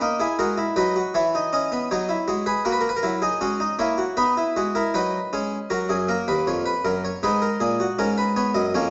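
Heard through vinyl crackle and a top end capped at 8.0 kHz, with a recital hall's 1.6-second reverb around it, this lively, elegant baroque-style four-part fugue at 79 BPM in 4/4 features a brilliant, plucked Italian-style harpsichord with octave strings placed up front, playing alone from D#2 to D#5 as its voices move through B, C#m7/E, F#7, F# and G#m7 in a short 8.9-second cut from a longer piece.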